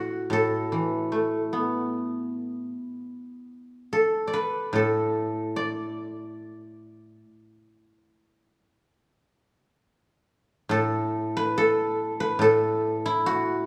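A solo guzheng carries this short passage of Chinese traditional music, cut from a longer piece, its fingerpicked strings ringing with a silvery, warm tone. The mood is serene and pastoral, moving in a free rubato around 66-77 BPM in 4/4. The instrument sits up front and spans from A2 up to A5, heard alone from start to finish across its 13.7 seconds. A moderate concert hall reverb gives the notes a spacious halo. The opening section runs to 10.7 seconds before a new section takes over for the closing moments.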